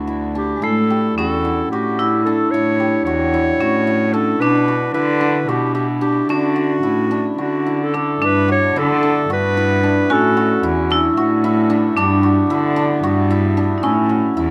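A solo clarinet carries the melody up front from 0.4 to 10.7 seconds in this shimmering, hopeful contemporary chamber piece in 7/8 at 222 eighth-note beats per minute, over ringing hammered dulcimer arpeggios and a nasal, reedy bowed cello bass with light vibrato and a gut-string tone. A metallic vibraphone played with hard mallets, motor off, adds a vintage, band-limited second line, and at 8.2 seconds a clear, distant woodwind section enters in the background with tight sustained chords. The close, detailed sound has little reverb, and the harmony moves from D and A through B minor before alternating between G and A chords.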